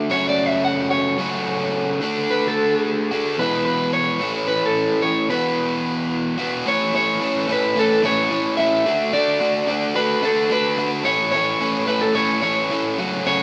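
A straight 4/4 pulse at 110 BPM drives this upbeat, carefree rock clip in A major, cut from a longer piece, where a bright, double-tracked, overdriven electric guitar sits up front playing a picked riff from the low register into the middle. From 0.1 s, a second electric guitar, darker and just at the edge of break-up, carries a picked melody higher up through an analog delay, moving over chords such as F#m, D, E and A before the music shifts into a new section at 6.7 s. Light reverb gives the rough home demo mix a touch of digital ambience.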